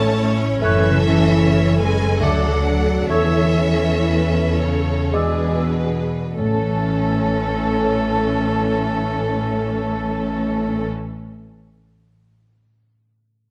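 Classical slow romantic orchestral movement in A major and 3/4, serene and tender with rubato at 47-79 BPM, where lush, vibrato-rich violins carry the melody over a second violin line and expressive viola, focused cellos, soft-attack double basses, dark distant French horns and a ringing fingerpicked harp, with an airy flute ensemble, smooth solo oboe and mellow bassoon entering at 0.6 seconds, round soft-mallet timpani joining very quietly at 6.4 seconds, and the whole heard through close, detailed microphones and a moderate scoring-stage reverb as the tempo slows through the opening passage before resolving on A.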